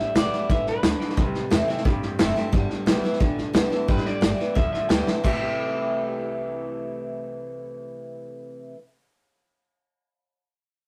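Rough, saturated rehearsal-room sound with a moderate reverb gives this short cut from a longer rockabilly piece an upbeat, rowdy energy in a straight 4/4. Up front, a picked steel-string dreadnought acoustic guitar plays the accompaniment throughout, full-bodied and fresh-stringed with audible finger squeak. A twangy, slightly broken-up electric guitar through a small old amp plays a lo-fi riff under a phaser, while a second bright, picked electric guitar carries the melody, dropping out briefly before returning at 3.9 seconds. Beneath them a woody, thumpy upright bass with gut strings sits in the background, and a vintage drum kit with a boomy kick, dark cymbals and a pumping small-room sound drives the groove until a drum fill at 5.1 seconds, after which the kit stops at 5.3 seconds. The harmony moves between G6 and C6 chords.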